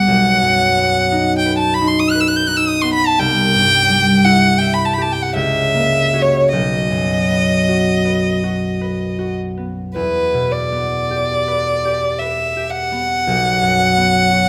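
A moderate large-studio reverb gives this short passage from a longer piece a spacious, resonant setting, with both instruments placed up front. It is a romantic classical duo for violin and harp in a slow, rubato triple metre, solemn and yearning in mood. A single violin carries the melody from start to finish, its bowed tone rich, smooth and even, with vibrato. The concert harp plays the accompaniment throughout, its fingerpicked acoustic strings bright and ringing beneath the violin. The harmony moves through B, C and an E minor chord before settling on a bare B fifth near 13.2 seconds.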